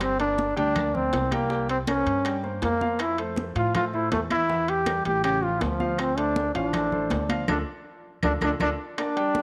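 Salsa at 161 BPM in D minor, this passionate, driving fragment of a longer piece puts a bright, punchy solo trombone up front, carrying the melody with light vibrato and a smooth top. A warm, polished grand piano with short sustain supplies the accompaniment, while a dark, thumpy upright bass with gut strings plays pizzicato underneath until it drops out at 8.7 seconds. The percussion sits in the background: damped, high-tuned congas under soft hands, ringing metal-shell timbales, woody claves, and very quiet, tight bongos struck with hard hands. The harmony moves from Gm through C5, Fmaj7, Edim and Aaug7 before settling on Dm7. From 7.5 to 9.0 seconds a drum fill and a band accent mark the close of the section, all set in a moderate echo chamber reverb.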